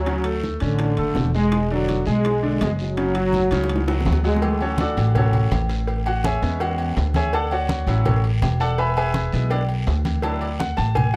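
A dark studio sound with moderate reverb frames this joyful, festive salsa excerpt, where a punchy, close-miked trombone section with light vibrato and plate reverb carries the melody until 4.6 seconds. Up front, a woody, thumpy pizzicato upright bass on gut strings anchors the groove while hard-handed congas, round bongos and cowbell, ringing timbales and agogo bells, and a raspy guiro make up the percussion, with a drum fill at 3.5 seconds. From 4.4 seconds the bright grand piano, intimate with audible action noise, takes a solo over changes moving from Dmaj7 through Amaj7 and E to Dadd9.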